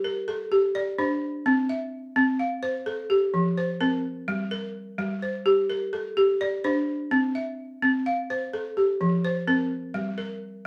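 A woody, buzzing balafon opens the recording alone and carries it as the sole instrument, heard in a short excerpt cut from a longer West African traditional piece. The mood is hypnotic and flowing, set in 12/8 at 85 BPM counted in dotted quarters with a straight feel, in G dorian. Struck with hard rubber mallets, the balafon ranges from F3 to F5 and sits up front, its tone dry and boxy like a small room, yet it is placed within a wet large studio reverb, captured as a band playing live in one room. The harmony circles through Gm, C and F, returning to Gm at 4.3 seconds and again at 9.9 seconds. The instrument plays from the start until 10.7 seconds.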